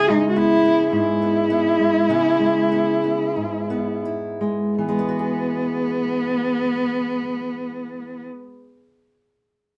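Folk in a nostalgic, pastoral mood, this brief excerpt from a longer piece sets a dark, woody bowed cello melody with vibrato up front over a warm fingerpicked steel-string acoustic guitar, easing down in pace through its opening before moving from C#m7 to Eadd9 at 4.8 seconds in a moderate studio reverb.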